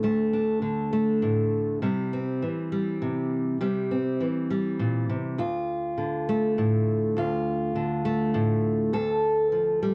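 A straight 3/4 lilt at 101 BPM carries this bittersweet, yearning folk fragment in D minor, tuned to A4 = 437 Hz, where a solo fingerpicked steel-string acoustic guitar, warm and up front and colored by cassette tape, spans D2 to A4 and moves from a D5 opening through C into a new section at 5.4 seconds on Dm before settling on F/D at 8.9 seconds, all captured as a home cassette recording in a snug booth ambience with a faint mains hum beneath.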